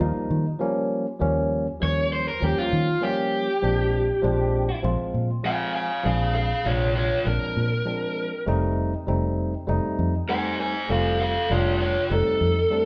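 A raw, overdriven garage guitar carries the melody up front from 1.8 s, and its picked, lo-fi tone gives this laid-back soul blues excerpt its grit. Beneath it, a bright, clean tine electric piano plays the accompaniment through its built-in speakers, while a round, foam-muted fingered bass holds the low end over a straight-eighth feel moving from Eb7 to Bb7 and F7. The band sounds as if it is playing live together in one room, bathed in a wet, large studio reverb.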